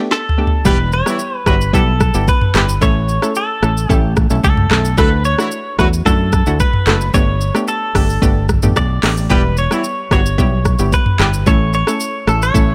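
A dry mix opens with an overdriven, up-front afro-pop drum kit fill of knocking kick, woody snare, metallic hats, handclaps, rim click, shaker and toms, setting a breezy, sunny afrobeats groove at 111 BPM in 4/4, where a hollow, bouncy square-wave pluck with chorus and a twangy, clean direct electric guitar melody drenched in lush chorus and tape echo ride over a round, punchy fingered bass and a smooth horn section with light vibrato entering at 0.7 s, all cycling through Gadd9, Em, A and Dadd9 in this short cut from a longer piece.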